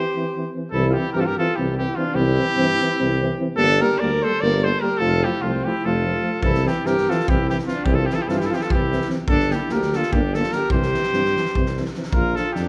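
A bright trumpet carries the melody in this wild, exuberant Balkan brass band piece, sitting up front yet sounding distant and roomy, with a classical-style tone. It moves in a brisk 7/8 at 295 BPM counted in eighths, with a straight feel in C mixolydian, over chords that cycle through C, Gm, F and Bb. A warm alto saxophone with vibrato and a smooth top plays a second line beneath it, while a dark euphonium and a close-miked, mellow trombone with light vibrato fill in the accompaniment from the background. A soft-attacked tuba enters on the bass at 0.7 seconds. At 6.4 seconds an up-front acoustic drum kit joins with a punchy kick and fat snare, its saturated, gritty sound and rolled-off top set in a studio room. The brass sits in a moderate recital hall reverb, and the recording is cut from a longer piece.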